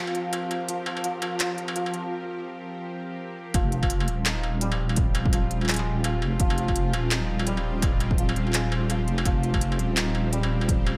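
Deep, up-front wobble bass carries this tense, heavy half-time drum and bass excerpt, its square and sine layers detuned and thickened with chorus when it arrives at the drop at 3.5 seconds alongside a heavy electronic kick. From the very start, a string-like drone holds sustained chords with a slow attack, vibrato and ring-modulated grit, its built-in reverb and sidechain pumping giving the opening build-up a restless breath that carries on through the drop. A hammered santur runs arpeggios throughout, its shimmering, ringing tone trailed by tape echo. An industrial drum kit of handclaps, crisp hats and struck metal plays from start to finish with a swung feel, re-recorded in a large room with a tape-warm character shared by the kick. A brief break from 2.1 seconds sets up the drop, and light reverb wraps the whole mix.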